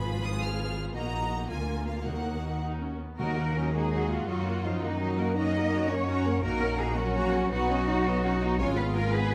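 A recital hall's wet reverb surrounds this brief orchestral passage, cut from a longer classical piece in Eb minor, moving in a restless, dramatic 6/8 at 111 BPM counted in dotted quarters. A close, lush first violin section carries the melody high above, smooth and even with vibrato, while a darker, more distant second violin section shapes an expressive inner line beneath it. Violas fill in the accompaniment with an intense tone, cellos add a focused bass, and up-front double basses anchor the bottom with light vibrato. Very quiet timpani struck with hard mallets sound on Eb between 2.1 and 3.7 seconds, close and dry against the reverberant strings. From 3.2 seconds a dark, roomy French horn section joins with sustained chords as the harmony turns from Eb minor through Gb and B before returning to F diminished over Ab at 8.6 seconds.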